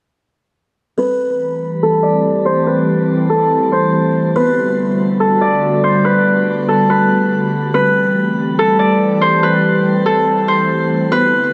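A fingerpicked, ringing Celtic harp carries the melody up front from 1.0 seconds through a low-pass filter and digital delay, joined at 1.5 seconds by a warbling, nostalgic tape-like pad of detuned, slow-attack sustained chords with chorus and tremolo, while a woody, buzzing kalimba adds soft texture in the background, set in an ethereal, spacious half-time hip hop piece at 142 BPM in A dorian that moves from Am7 to Gmaj9 and back under a filter sweep and shimmer reverb, with a dark, warm production, cut from a longer piece.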